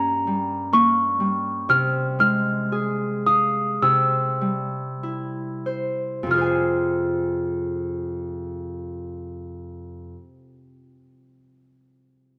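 A celesta and a Celtic harp begin together at the opening of this short excerpt from a gentle, dreamy lullaby in F minor. The celesta carries the melody high in its register, its tone bell-like, delicate and sweet, with the mellow, soft touch of felt hammers. Beneath it the fingerpicked, ringing harp reaches from deep bass notes up into the treble and sits up front with a bright, acoustic sound. The tempo moves between 44 and 66 BPM in a straight 4/4, slowing down through the first 6.3 seconds before the music turns to a new section on an F minor chord. The celesta stops at 9.8 seconds and the harp at 10.2, both set in a moderate recital-hall reverb within a dark production.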